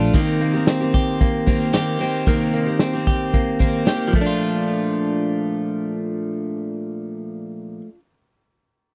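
Jangly indie pop with a bright, youthful mood, this dry, close 1970s-style studio excerpt pairs a fresh-stringed, full-bodied picked acoustic guitar with twangy, compressed clean electric guitar arpeggios, both up front, while a dark, smooth vintage drum kit with a punchy kick, dark cymbals and a rolled-off top plays only until 4.3 seconds as the chords move from Cm7 to Bbmaj7.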